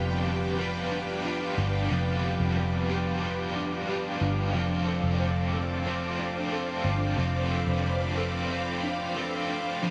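Awash in moderate spring reverb and echo, this ethereal, blissful dream pop fragment at 91 BPM in 4/4 sets a bright, overdriven guitar up front with tremolo, subtle chorus and dub echo beside a dark, clean fingered guitar playing compressed arpeggios through ensemble chorus and dub echo, a vintage string machine holding full, sawtooth cello chords with slow attack, and a round, foam-muted picked bass, over a harmony that moves from G7/F to Dm7/F at 4.5 seconds.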